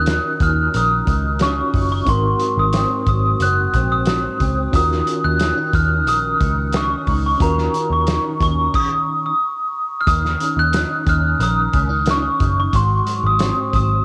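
A glockenspiel played with rubber mallets carries the melody up front, its bell-like, ringing tone colored by analog chorus, tape echo and cassette tape. This lonely, wistful piece of indie and bedroom pop, cut from a longer work, moves in a straight 4/4 over minor seventh and dominant seventh chords. Beneath it, an electric guitar at the edge of break-up adds compressed, slightly broken-up accompaniment with ensemble chorus and a warbly pitch drift, while a reedy, mellow electric piano with fast tremolo, heard through its built-in speakers, fills in until 8.8 s. A dark, foam-muted picked bass gives a round, punchy low end, and a loose acoustic drum kit brings a fat snare, dark cymbals and a pumping small-room sound. After a stop from 8.7 to 10.1 s the phrase begins again, all of it set in light reverb and small room ambience that suits the home cassette recording.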